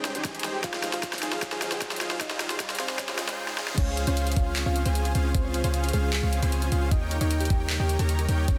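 Future bass at 153 BPM in a half-time 4/4 feel, this bright, euphoric cut from a longer piece moves from a build-up into a drop at 3.8 seconds. A huge, thick, detuned supersaw riff carries the track throughout, heavily compressed and pumping against the sidechain, while a very quiet breathy pad holds sustained chords underneath and a lush, punchy unison pluck spins arpeggios. During the build-up a background riser and a drum fill from the dubstep kit lead in, with its huge snare, bright hats, handclaps and crash sitting up front beside a knocking, tape-tinged electronic kick. A round, tine-like thumb-piano-style pluck adds a gentle melody from 0.6 seconds, softened by chorus and dub echo. At the drop a deep, boomy 808-style bass arrives alongside an airy, dreamy lead playing high arpeggios through chorus and digital delay, as the chords pass through Dbmaj7 and Eb7. The mix is dense and heavily limited with light reverb and a faint mains hum.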